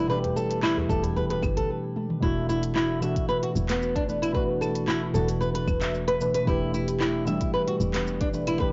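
A fingerpicked flamenco guitar sits up front, spinning arpeggios through tape echo across this earthy, meditative slice of organic downtempo at 113 BPM in a straight 4/4. Beside it, muted felt-like synth keys play soft, intimate chords with a mellow, chorused tone, ring-modulated edges and a filter sweep, pumping gently against the beat and trailing tape echo. A woody FM bass holds the low end with round, dark notes that pump along with the keys, while an electronic kick drum enters at 0.9 s with a deep, tape-warm thump. The afro-pop kit adds claves, handclaps, smooth hi-hat, shaker and toms, and a tight, cracking djembe with metal rattles sits in the background only until 1.5 s. A brief stop from 1.7 s ends in a drum fill, and the music opens into its second section at 2.2 s, moving from G/E through Bm7/E to Em. The cassette home recording gives a dim, lo-fi top, with light reverb and a digital ambience around the parts.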